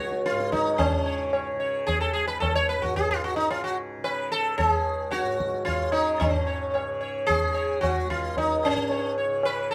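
A bright, plectrum-plucked sitar and a softly plucked tanpura drone begin together in this radiant, devotional Hindustani classical excerpt, with the tabla joining almost at once. The music moves at 111 BPM in a straight 5/4, centred on C# major with tuning set to A4 = 436 Hz. Up front, the sitar carries the melody between C#4 and C#5, its buzzing tone ringing with sympathetic strings. Beneath it, the tanpura holds a lower, quieter drone from C#2 to C#3, shimmering and buzzy, while the low-tuned tabla gives short-ringing strokes in a live room sound. Moderate studio reverb surrounds the ensemble, and the passage shifts into a new section at 6.2 seconds before the cut at 9.7 seconds.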